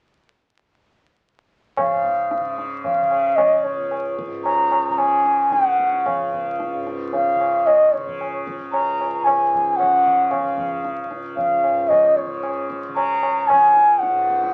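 This sounds like a very old 78 rpm record, with vinyl crackle and a moderate small-room reverb around the players. It is a brief, serene and radiant fragment of Hindustani classical music, cut from a longer piece in a straight 4/4. From 1.8 s, a mellow bamboo bansuri carries the melody, up front in the mix with a pure tone, soft attacks and vibrato. Beneath it, a softly plucked tanpura holds a low drone, buzzing and shimmering with a warm acoustic body. A high-tuned tabla sits close yet lower in the balance, its ringing strokes sounding until all three parts stop at 14.5 s.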